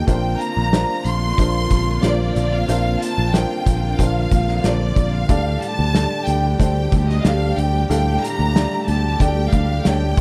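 A straight 4/4 pulse at 92 BPM from a loose, punchy indie drum kit with a pumping room sound and a growly, up-front picked electric bass drives this dramatic piano-driven pop excerpt, where a lush, bowed violin section carries the melody high over a clear, woody, slightly detuned upright piano and a warm, sul tasto string section holding chords in the background, moving from Bbadd9 to Dsus4 at 5.3 seconds in a dry studio sound.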